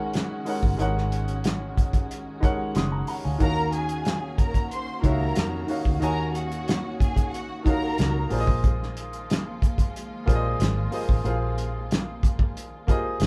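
A band playing together in one small room, with a short, moderate reverb, gives this lush 1970s-style soul fragment an intimate, close feel and a cinematic, bittersweet mood in a steady, straight four. Up front, a cloth-damped acoustic drum kit thuds along on hi-hat, tight kick and a fat snare, its gritty, saturated tone rolled off at the top. Underneath, a vintage fingered electric bass sounds dark, round and punchy through its amp, foam-muted for a rounded attack. A clear, natural grand piano carries the accompaniment close to the ear, its action noise audible, while a studio string section holds smooth, even sustained chords in the background. From 3.4 to 8.3 seconds, an expressive bowed violin section adds a second line with rich vibrato and a slapback echo, entering as the harmony moves from Ab7sus4 to Ebm7 and dropping out as it shifts to Bb7sus4.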